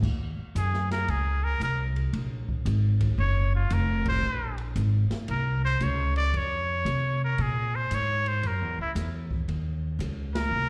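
Moody and late-night, this short swung jazz cut from a longer small-group performance, heard live through a venue's PA, sets a nasal, breathy straight-muted trumpet melody with vibrato and a slapback echo, entering at 0.6 seconds, over a growly, woody pizzicato upright bass sitting up front and a smooth acoustic drum kit with dark cymbals and a boomy kick, as the chords move from Ebm9 to Bbm9 and the band hits accents at 4.0 and 10.3 seconds.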